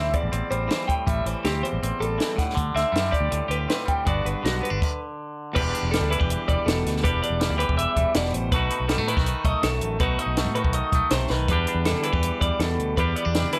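Playful and wistful, this math rock and midwest emo passage runs at 162 BPM in a straight 4/4, tuned to A4 = 445 Hz, moving from Am7 through D7sus4 and Gmaj7 into Em7 and B7. An up-front, twangy electric guitar carries the accompaniment while a bright, compressed twelve-string electric guitar spins arpeggios above it, over a round, punchy fingered bass and a dry cocktail drum kit with dark cymbals, a high-tuned snare and a tight kick. The band halts for a stop from 4.8 to 5.6 seconds, and a drum fill at 11.3 seconds leads back to Em7, with light reverb around the sound.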